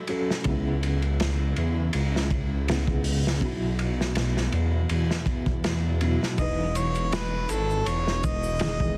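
Dark and hypnotic, this 9-second trip hop excerpt in C# minor moves at 81 BPM with a swung feel, as a soft, felt-muted upright piano with sampler grit, tremolo, tape echo and a filter sweep carries C#m7, Bsus4 and Emaj7 over a crunchy, saturated breakbeat kit and a deep, rumbling detuned saw bass, until a jazzy harmonica with light vibrato, scooped notes and tongue slaps enters up front at 6.4 seconds beside a faint tube shaker and triangle, all under vinyl crackle and a dense, heavily limited master.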